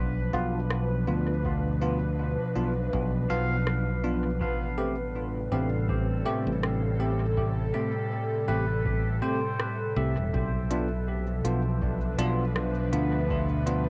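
A home cassette recording in a booth with moderate ambience gives this short cut from a longer ambient dub piece a hazy, tape-softened glow and a meditative calm at 81 BPM in 4/4, with a gentle swing on the sixteenths. Up front, a round, punchy fingered electric bass sits low and dark beside an airy, breathy pad whose detuned, warbling chords carry chorus and a slow attack with a long release. A twangy pedal steel guitar, played with fingerpicks and slide, drifts through bright arpeggios with volume swells and dub echo, while a bell-like tine electric piano adds clean stabs treated with analog chorus and echo. An organic electronic drum kit with smooth hi-hats and rim clicks enters at 0.7 seconds, and a deep, tape-warm electronic kick follows from the background at 1.4 seconds. The harmony moves from Bdim to Am7 and back, and at 10.3 seconds a faint, bubbling texture of resonant random filter steps surfaces in the distance, wrapped in its own reverb.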